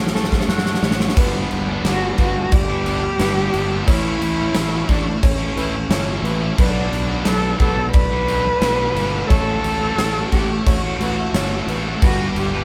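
This euphoric, soaring post-rock excerpt opens on a build-up and drum fill from a huge, up-front arena kit with a punchy kick and bright cymbals. A twangy clean guitar plays arpeggios until 1.2 s, over two overdriven guitars picking a riff in the background, one sludgy and one keener, and a growly fuzz bass. Throughout, a mellow felt-muted upright piano with audible action noise plays arpeggios and a very quiet con sordino string section holds sustained chords. From 1.2 s a dark, veiled cello carries the melody, bowed with vibrato by a single close player, as the harmony moves through Gmaj7, A and Bm7, all playing live in a moderately reverberant stone room.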